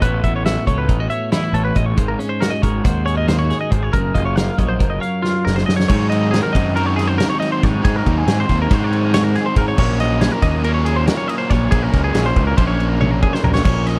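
A bright, clean twelve-string electric guitar opens this wistful, playful math rock and midwest emo excerpt with twangy, compressed chordal accompaniment, while a second twelve-string weaves picked arpeggios in the upper register. Underneath, a punchy fuzz bass with overdrive sits up front beside a loose indie drum kit whose dark cymbals, tight kick and medium-tuned snare carry a distant, roomy character. The piece moves at 278 BPM in eighths through a straight 9/8 in Gb lydian, with chords such as A69, Ab9sus4 and Gbmaj9 lending an open, unresolved color. A drum fill at 5.2 seconds leads into the second section at 5.9 seconds, where a raw, double-tracked garage guitar enters with an overdriven riff in the middle register, and the accompanying twelve-string stops at 7.8 seconds. The recording stays dry, with the bass and drums prominent and the guitars' brightness riding over them until the piece is cut off at 14.0 seconds.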